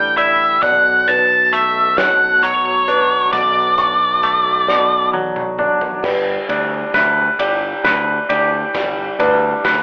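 Post-rock in a slow 6/8 at 44 BPM, hopeful and cinematic, this piece sits in G lydian. A dark, fuzzed octave lead guitar carries the melody up front until 5.1 s, over arpeggios from a twangy, compressed electric guitar with tremolo and a soft, felt-muted upright piano whose action noise is audible. A growling, punchy overdriven fingered bass anchors the low end, while a loose acoustic drum kit with a fat snare and tight kick comes in at 0.2 s and drives drum fills into a build-up from 6.0 s as the harmony moves from A7sus4 and Bm7 to G. The band plays live in one room with large studio reverb and a telephone sound.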